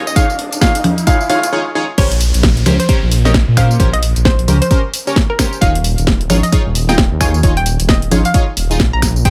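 Soaked in light reverb and built on tape-warmed drums re-recorded in a large room, this moody, late-night two-step UK garage excerpt at 132 BPM swings its 16ths as a background riser and downlifter climb to a break at 1.5 seconds and a drop at 2.0 seconds, carried by a rumbling, detuned saw bass with sidechain pumping sitting up front, a punchy electronic kick, a house kit of cracking snare, congas, crash cymbal, finger snaps, hi-hat and tambourine, gritty 12-bit chord stabs with chorus and delay, and a hollow, bouncy square pluck melody coloured by cassette tape.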